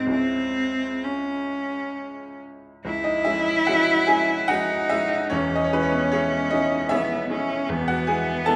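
A bowed cello and a bright baby grand piano begin together in this solemn, yearning romantic duo, drawn from a longer piece in C# minor with a rubato lilt in 3/4 at roughly 64-78 BPM. The cello sings a smooth, even melody with vibrato in its low-middle register, while the piano's brilliant accompaniment reaches from deep bass notes to its upper range, both sitting up front. A recital hall reverb with a 1.6-second tail wraps the pair, and the harmony moves from C# minor to E at 7.7 seconds.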